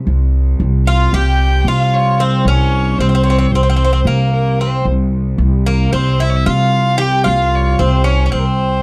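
A bright, metallic Greek bouzouki carries the melody up front in this passionate, stately Turkish makam ensemble fragment in C makam hicaz, picked on double strings with some octave-doubled courses. It enters at 0.9 s alongside a single biting violin playing a second line with vibrato and an airy bow. Beneath them, a woody, growly pizzicato upright bass sits close and forward while an earthy chamber cello section holds a smooth-topped drone, all in a 9/8 metre at 225 BPM counted in eighths within a dry, close 1970s-style studio sound.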